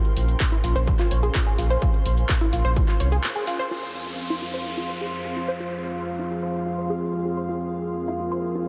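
Filtered handclaps and hi-hats open this cinematic, driving melodic techno piece over an airy, breathy pad, soon joined by a distorted electronic kick, a round, deep analog bass and a tight, detuned sequenced synth arpeggio whose filter sweeps until a brief break at 3.2 seconds, after which a moody, slow-attack analog pad takes over the sustained chords at 3.7 seconds alongside an electronic downlifter, while the bass, arpeggio and both pads pump with sidechain compression in a dreamy mix soaked in huge ambient reverb.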